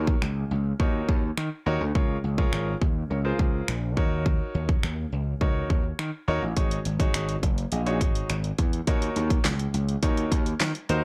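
A clear baby grand piano and a gritty, overdriven slap bass open this driving, bittersweet dance-pop excerpt in Eb dorian at 104 BPM, both pumping against the sidechain, with the piano polished and present in its middle range while the bright, punchy bass sits up front, joined at 0.1 seconds by a layered electronic pop kit of finger snaps, handclaps, warm hi-hats, a fat snare and a punchy kick, all moving through Ebm7, Bbm7 and Ab7sus4 in a dry, gritty digital ambience.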